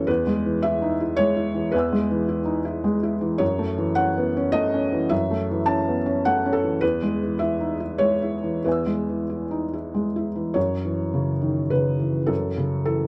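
Wistful and reflective, this short excerpt of neoclassical minimalist piano drifts in 3/4 with a rubato feel, its tempo moving between 92 and 111 BPM in F# dorian. A felt-muted upright piano plays alone from start to finish, spanning E2 to E6, its tone soft, mellow and intimate, placed up front as if close to the listener. The harmony moves gently between E and F#m7, settling back onto F#m7 as a new section opens at 10.6 seconds. A moderate small-room ambience gives the instrument a modest halo of space, and the overall production leans dark. Cut from a longer piece, it ends at 13.1 seconds, feeling like a passing moment of quiet contemplation.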